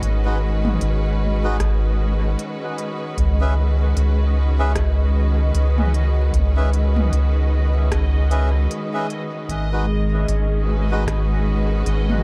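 Spacious and deep, this ambient dub excerpt rides a swung 4/4 groove, with a round, tube-saturated sub bass up front, a tape-warmed electronic kick in the background, a small-room drum kit of smooth hi-hats, rim clicks and toms trailing dub echo, lush bowed strings holding bright vibrato chords, reedy melodica stabs echoing from 0.3 seconds, and a bubbling, detuned sawtooth texture stepping through resonant filter changes with chorus and reverb, all moving between G#m7 and C#7(no3) in an echo-heavy mix dusted with vinyl crackle.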